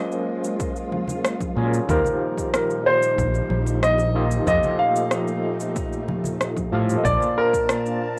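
This rough home demo sits in a wet small room, with a short reverb that wraps the parts in a close, intimate glow. It is a blissful sunset chillout cut at 93 BPM in a straight 4/4, built on lush chords that move from Gbmaj9#11 through Eb69 and F7 to Bbmaj9. An up-front grand piano carries the melody in a narrow upper range, its short sustain roughened by vintage 12-bit sampler grit and trailed by digital delay and plate reverb. Beneath it, a barky, overdriven tine electric piano plays through a combo amp with medium tremolo and delay under a running filter sweep, while a silky string machine holds soft, slowly blooming chords thickened by ensemble chorus. The beat comes from punchy, overdriven electronic kick, cabasa, congas and rim click, with ringing hand-played bongos and congas set in the background. A dark, round fretless electric bass enters at 1.6 seconds, sitting direct and up front until 7.2 seconds.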